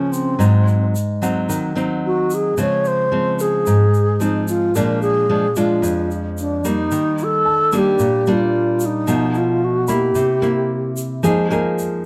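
Bossa nova at 111 BPM in a smooth, wistful mood, cut from a longer piece, with an airy alto flute carrying the melody up front, its vibrato and crisp attack softened by rolled-off highs, over fingerpicked classical nylon-string guitar. A grainy, bright egg shaker sits low in the mix, while a dark baby grand piano with audible action noise and short sustain appears briefly at 1.2 seconds and returns from 7.5 seconds. The chords move from Ab7 through Dbmaj7, Bb7 and Ebmaj7 to B7#11 and C7, landing on Fm7 at 11.2 seconds, all captured by close, detailed microphones with light reverb.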